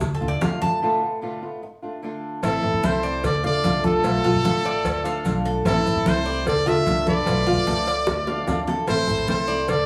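Cuban son and guajira at 149 BPM in a straight 4/4, danceable and sultry, cut from a longer piece and cycling through D minor, B half-diminished and A minor. The metallic, double-strung Cuban tres takes a short solo through the opening, with a break from 0.8 to 2.4 seconds, over boxy fingerpicked flamenco guitar, growly pizzicato upright bass, thick-skinned congas, round bongos and cowbell, and grainy maracas set back in the mix. At 2.4 seconds a brilliant, forceful trumpet with vibrato, scooped notes and plate reverb takes the melody up front over a small fingerpicked nylon-string guitar line, with a drum fill at 8.1 seconds in a moderate studio room.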